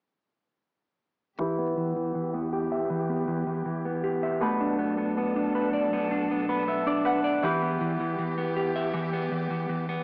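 A hard-hitting, menacing hip hop piece in E minor at 159 BPM with a half-time feel, cut from a longer work. A dark, clean electric guitar sits up front with fingered arpeggios, coloured by spring reverb and tape echo, while a bright, ringing Celtic harp fingerpicks accompaniment and a veiled, con sordino chamber string section holds soft-attack bowed chords with vibrato; all three play from 1.4 seconds, moving from Em to Bm7 and back to Em. A filter sweep runs through the passage, the harp adds a fill at 6.3 seconds, and the whole has a dry, gritty hardware character with a small-speaker sound and light reverb.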